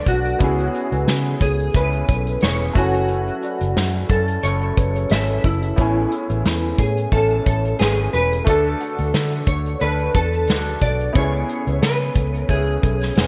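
A bright, 1980s-style digital sheen and a moderate plate reverb frame this sunny, hazy bedroom-pop fragment, cut from a longer indie pop piece at 89 BPM in 4/4 with a light swing on the sixteenths, set in D lydian. A mellow, clean electric guitar carries the melody with a dark, fingered tone, dressed in ensemble chorus and digital delay, while a kalimba sits in the background on a second line, its thumb-plucked, ringing notes sharing that same chorus and delay. Beneath them, a worn, woody upright piano, slightly detuned and tinted with cassette-tape colour, plays accompaniment alongside a twangy, slightly broken-up picked guitar through a small old amp, which wobbles with subtle chorus and warbly pitch drift. A foam-muted, round vintage bass and an acoustic kit with a punchy kick, medium-tuned snare, hi-hat and bundle sticks, treated with gated reverb, both sit up front from 0.1 seconds. 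The harmony moves through C#m7, F#m7, Amaj7 and D before returning to C#m7 at 11.2 seconds, giving the whole passage a gently drifting, daydream quality.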